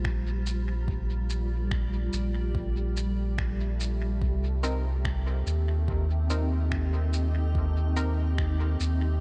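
A hazy, deep digital ambience with dulled highs frames this short ambient dub excerpt at 72 BPM in 4/4 with a light 16th-note swing, where a round sine sub bass sits up front under a blurred, detuned granular cloud pad moving from Gm9 to Cm7 at 4.2 seconds, an overdriven electronic kick set back in the mix and muffled, pitched-down finger snaps and shaker with dub echo pulse alongside a resonant bubbling stepped-filter texture in the background, and a muted, chorused sawtooth dub chord stab with echo enters at 4.6 seconds.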